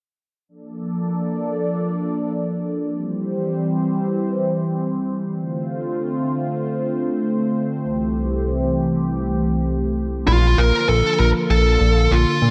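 Synthwave at 98 BPM in a straight 4/4, this driving, cinematic passage is cut from a longer piece and opens on a swirling analog pad that carries sustained chords from 0.7 s. The pad's detuned sawtooth tone is treated with phaser and chorus, and its slow attack and long release give it an evolving presence up front in a lush hall reverb. The harmony moves through Bbmaj7, C, Dm7 and Am7/C before returning to Bbmaj7 as the music shifts into a new section at 10.3 s. At that point a fat, thick analog bass enters, its wave-folded, detuned tone shaped by a filter sweep and a fast attack. A dark, high-gain electric lead guitar joins at the same moment with a picked, distorted melody touched by delay, sitting prominently alongside the bass as the pad continues.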